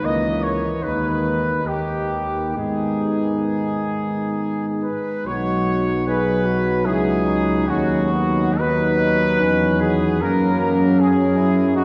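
In a rubato 3/4 at 63-80 BPM, this melancholic, elegiac classical hymn for brass band, cut from a longer piece, sets a bright trumpet section's up-front melody over a mellow flugelhorn second line, a dark, distant trombone section and a close-miked warm solo trombone in the background, and a tuba bass with light vibrato, all heard from further back in a wet cathedral reverb as the harmony moves from G# minor to B major at 5.3 s.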